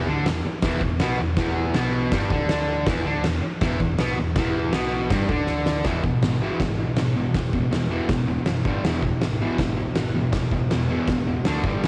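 A gritty, lo-fi home cassette recording with light studio reverb opens this rowdy, swaggering slice of garage rock, cut from a longer piece and running just under twelve seconds in a straight 4/4. Up front, a double-tracked fuzz guitar drives the riff with bright, compressed distortion and a taped edge, centred on E power chords before moving through G5 and D5 near the close. An oversized, low-tuned acoustic drum kit comes in at 0.3 seconds, just after the guitar, its punchy kick, fat snare and dark cymbals saturated by tape and ringing in a pumping stone room. Further back, a round, hollow-body short-scale bass, picked and amped, adds a dark low end beneath the riff. A drum fill at 5.5 seconds carries the band into a second section at 5.9 seconds, where the swagger continues through to the cut.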